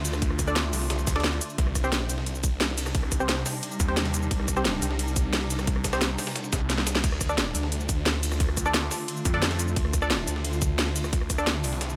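Dark technical drum and bass at 176 BPM in 4/4 with a straight feel, this mechanical, aggressive excerpt sits in D phrygian and moves from Dm to Cm at 1.6 seconds before returning to Dm at 7.0 seconds. Up front, a snarling distorted saw bass growls low with detuned unison layers, a moving notch and tube saturation, while a swarming drone of wave-folded, granular sustained chords slowly blooms above it with its own built-in reverb and sidechain pumping. The main drum kit is layered and tape-tinged, with a cracking snare, crisp hats, rim clicks, cabasa and crash cymbal, paired with a tight electronic kick that enters at 0.2 seconds. Further back, a gritty, compressed breakbeat sampler-style kit adds a high-tuned snare, hi-hat and ride, all thinned by high-pass filtering. A muted, mellow dub chord stab with a filter pluck, chorus and delay flickers in the background, and a drum fill at 6.7 seconds leads into the return of the home chord, all set in light reverb.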